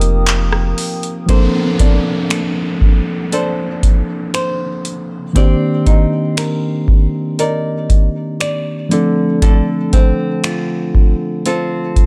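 Tender and smooth, this slow contemporary R&B excerpt pairs a mellow tine electric piano and a fingerpicked flamenco guitar with delay over a booming analog drum machine of deep kick, metallic hats, snaps, handclaps and rim clicks, roughened by vintage 12-bit sampler grit, while a round 808-style bass and an airy, hollow pad with chorus sound only briefly at the start, and an electronic downlifter runs from 1.4 to 9.4 seconds as the chords move from Bbmaj9 through Cm9 to Dm7.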